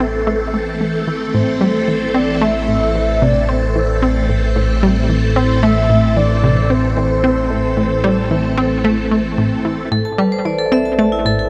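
Set in a moderate plate reverb, this cosmic, mysterious ambient excerpt opens on a bright, swirling vintage string machine holding sustained chords through ensemble chorus and phaser, over a round, detuned analog pluck riff with echoing analog delay and a fat, saturated analog bass. From 1.3 s a soft, octave-layered synth lead sings a mellow melody with vibrato, while a filter sweep, running from the very start, shapes the synth arpeggio sound until 9.9 s. At that point a metallic, ringing vibraphone struck with hard mallets steps up front with delayed arpeggios.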